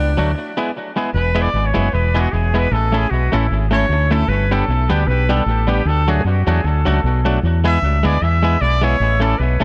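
A swung ska groove at 153 BPM in 4/4 bounces along in E mixolydian, driven by a dark, round fingered electric bass that sits up front alongside a twangy, clean, compressed electric guitar accompaniment touched with tape echo. A clear, close-miked tenor saxophone with vibrato offers a brief echoed phrase at the start before a break at 0.4 seconds. From 1.1 seconds a warm, punchy trumpet takes a joyful solo with scooped notes and light vibrato, its roomy, distant tone carried by tape echo over an E, A, G, D chord cycle in a small room with light reverb.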